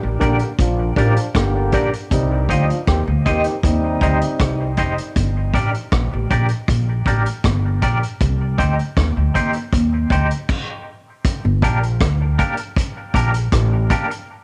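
A light-reverb home cassette recording with a deep, spacious feel, this dub reggae excerpt in G minor at 79 BPM moves between Gm and Cm over a woody, growly upright bass up front and a punchy, dark-cymbaled vintage drum kit, while a bright, twangy clean electric guitar with tremolo, dub echo and plate reverb plays throughout, a clear trombone section with dub echo sounds until 4.7 seconds, a very quiet, gritty reed electric piano barks brief stabs at the start, and the band stops from 10.5 to 11.2 seconds before returning.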